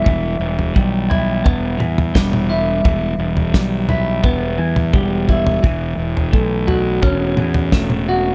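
Mysterious and dark, this short psychedelic rock passage moves in a straight four-beat feel and is cut from a longer piece. An electric guitar through a small old amp carries the riff from the very start, its picked tone slightly broken-up and compressed, with a flanger colouring it up front. A fingered electric bass, fuzzy and overdriven yet round, anchors the low end. A damped 70s drum kit sits dry and close, with a fat snare, tight kick and toms under a rolled-off top, and a drum fill arrives at 4.9 seconds. The harmony moves from E minor to F#m7 over E at 5.6 seconds, all within a small room with light reverb.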